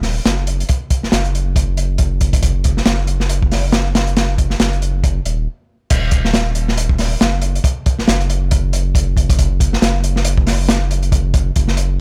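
This breakbeat excerpt, cut from a longer piece, moves at 138 BPM in Eb minor with a swung sixteenth-note feel that gives it an energetic, swaggering character. A crunchy acoustic breakbeat kit sits up front, its kick, snare, hi-hat and crash captured in a studio room with a gritty, saturated edge, a tight kick, a medium-tuned snare and dark cymbals under a rolled-off top. Beneath it, a thick, deep sine sub bass with a fast attack holds long sustained notes between Eb1 and Gb1, its saturation adding weight while it stays close and forward. The groove breaks off in a brief stop from 5.5 to 5.9 seconds before the drop lands at 5.9 seconds and carries through to the end. The dry sound, with little reverb, keeps both parts close and present.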